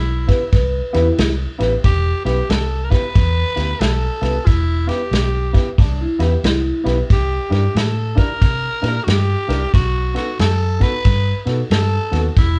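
Recorded by a band playing live in one stone-walled room and captured on cassette tape, this excerpt carries a moderate reverb and a worn character. It is a brooding, mournful electric blues shuffle with swung eighth notes, moving through three chords as it goes. A raspy, growling tenor saxophone takes the melody as a jazz-style solo, bright and present with vibrato, while a dark, round, foam-muted electric bass sits up front beneath it. A woody, polished upright piano fills in the accompaniment with long sustain, and a soul drum kit of kick, snare and ride sounds roomy and distant yet up front, its tight kick, medium-tuned snare and rolled-off top roughened by vintage 12-bit sampler grit. A slightly broken-up, compressed electric slide guitar adds a second line in two short passages, from 0.5 to 1.3 s and from 5.8 to 7.0 s.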